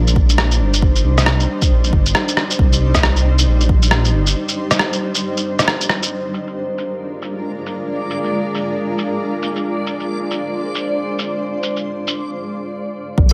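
Future garage at 136 BPM with a swung sixteenth feel, ghostly and rainy, cut from a longer piece and moving from Cmadd9 to Bb7 at 6.1 seconds. A cloudy, granular pad with vintage sampler grit and sidechain pumping sustains throughout, while a deep, tape-warm electronic kick drops out at 3.8 seconds and a rumbling, detuned saw bass follows at 4.4 seconds, both returning only in the final moments. A muffled, compressed shaker and rim click keep ticking up front, and from 7.2 seconds a faint reversed, dreamy texture swells on a high D, all set in a moderate, lush hall reverb.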